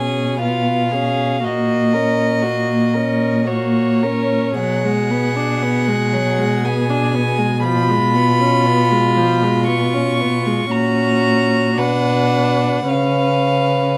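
A string quartet begins together in a lyrical, serene slow romantic movement in three with uneven, rubato timing: a pure, floating first violin sings the melody up front, a smooth-topped second violin carries a soft-attacked second line, an intimate viola adds light vibrato and airy bowing, and a dark, woody cello holds the bass up front, all four bowed sul tasto, caught by close, detailed microphones with light reverb in a passage cut from a longer piece.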